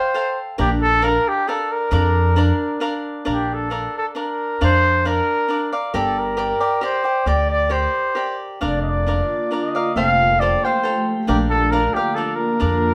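Mexican folk mariachi in Bb major, this romantic, festive excerpt moves at 135 BPM in a rubato 3/4, with a mellow, distant trumpet singing the melody in a classical style with light vibrato over a crisp, picked cavaquinho accompaniment. A woody, thumpy pizzicato upright bass on gut strings joins at 0.6 seconds, and at 9.2 seconds a glassy, ethereal FM pad with a slow attack, ensemble chorus and built-in reverb drifts in beneath them. The whole sits in a moderate studio room that gives the trumpet a roomy air.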